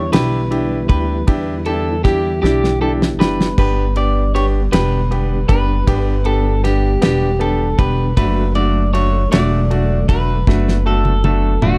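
A picked, slightly broken-up electric guitar sings the melody over soft, flute-like tonewheel organ chords sitting in the background with chorus vibrato and fast rotary speaker, and a woody, thumpy gut-string upright bass up front; a brilliant concert grand piano and a dry, damped 70s drum kit with fat snare and tight kick join at 0.1 seconds in this aching, dramatic six-eight pop ballad at 52 BPM, which moves from Em7 to G and D in a dark small-room sound, with drum fills arriving at 2.4 and 10.5 seconds.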